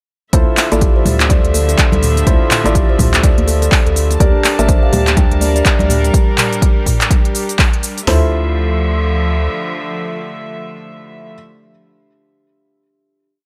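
Over a swung four-on-the-floor groove of punchy kick and snare, smooth hats, claps, shaker and toms from two layered deep house kits, with soft, high-tuned congas tucked in the background until 6.1 s, this warm, hypnotic afro house piece pumps its round analog bass, tape-echoed woody kalimba step sequence, felt-muted upright piano stabs and reedy gut-string pad through a Dm9-to-Gm drop before the drums fall away at 8.2 s and strings and piano hold a final Dm9 chord to 11.3 s.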